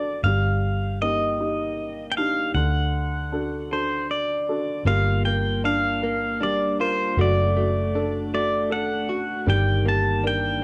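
A twangy pedal steel guitar carries the melody up front, its fingerpicked slide lines blooming in volume swells over a slow, straight 6/8 pulse at 52 BPM in G minor, giving this short section of an acoustic folk-pop ballad a heartbroken, reflective mood. Beneath it, a woody, polished upright piano with a cassette-tape tint plays the accompaniment, while a dark, round, foam-muted electric bass sits punchy and up front. At 4.9 s a scooped, direct-recorded clean electric guitar joins with picked arpeggios through tremolo and cassette tape, all within a lightly reverberant home-recorded sound.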